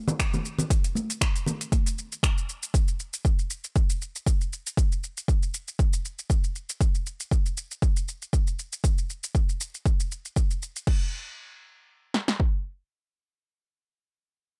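A house groove at 118 BPM in 4/4 with a light 16th-note swing drives this earthy, hypnotic fragment cut from a longer piece. The core of the beat is an electronic deep house kit with a deep kick and punchy snare, overdriven and up front, running from 0.2 to 12.5 seconds. A second layer of the kit adds crash cymbal, finger snaps, shaker and metallic hi-hats, also overdriven, and sits lower in the mix until it stops at 11.0 seconds. Congas with a thick, damped, high-tuned skin sound open the track only briefly, heard close in a small room before dropping out at 1.8 seconds. A digital ambience surrounds the parts, and the groove moves into a new section near the end before the cut.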